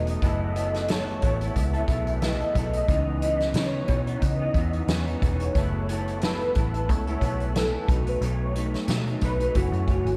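Indie pop with a bedroom-pop haze, this wistful 90 BPM excerpt in F# dorian floats a velvety, detuned synth lead with chorus and diffuse delay over a slightly broken-up electric guitar through a small old amp, warbling tape-worn synth keys set in the background, a dark, round muted electric bass and a roomy acoustic kit played with bundle sticks entering at 0.1 seconds, all gently swung and moving through F#m11, C#m9 and B7 in a dreamy mix soaked in plate reverb.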